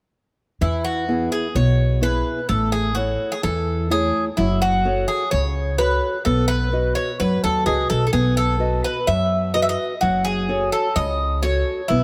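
Greek folk in a joyful, bright bouzouki-band style, this short passage cut from a longer piece has all three instruments entering together at 0.6 s and playing through to 12.0 s over a straight four-beat feel. The bouzouki carries the melody up front with a metallic, double-stringed ring and some octave-doubled strings, while a fingerpicked acoustic archtop guitar supplies warm accompaniment. A woody, thumpy pizzicato upright bass on steel strings sits forward beneath them, and a moderate plate reverb lends the sound a spacious sheen.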